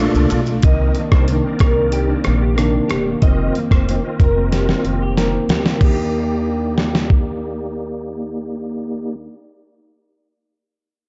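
A dark, hazy production with a moderate spring reverb frames this sunny indie and bedroom pop excerpt in Eb major at 93 BPM, where a gritty, compressed sampler-style soul drum kit sits up front with a thumpy kick and fat snare, playing from 0.1 to 7.2 seconds. A full-bodied fingerpicked jumbo acoustic guitar with analog chorus and vibrato and a woody, growly pizzicato upright bass carry the accompaniment alongside a reedy tonewheel organ with key click and fast rotary speaker. A twangy, slightly broken-up electric guitar with ensemble chorus and analog delay adds a second line from 0.6 seconds, while a filter sweep and a drum fill lead into a settling Ebmaj7 at 5.8 seconds.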